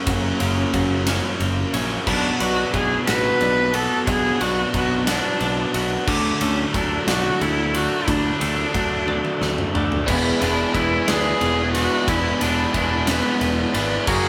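In a straight 6/8 pulse, this brooding, cinematic post-rock passage sets an intimate, airy sul tasto cello melody with light vibrato over background pedal-steel chord swells with a twangy edge, clean twelve-string electric arpeggios, a bright distorted guitar riff, warm picked bass and a big rock kit with a fat snare and punchy kick, all in a live stone-room reverb, with a drum fill at 9.1 seconds before an overdriven garage guitar riff joins at 10.1 seconds.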